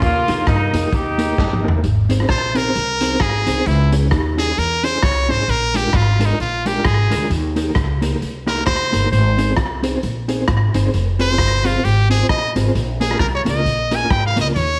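A brilliant, forceful trumpet takes a scooped, vibrato-laden solo from 2.3 seconds in this cheerful, upbeat ska excerpt at 132 BPM with a swung feel in Ab major, after a clear, punchy horn section states the opening melody until 1.7 seconds and a drum fill leads in, all over a woody, growly pizzicato upright bass, a gritty, saturated garage drum kit with slapback echo, and a mellow, clean electric guitar with tremolo in a lightly reverberant studio space.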